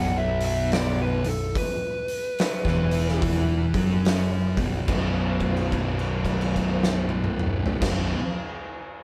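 Stoner and doom metal with an ominous, brooding swing, cut from a longer piece, where a dark, compressed fuzz lead guitar sings a solo until 3.2 seconds over two thick, distorted fuzz guitar riffs, one tucked in the background, a growly, bright picked electric bass, and an up-front, oversized low-tuned drum kit with a boomy kick, fat snare and dark cymbals that enters at 0.4 seconds, all played live in one room with light reverb.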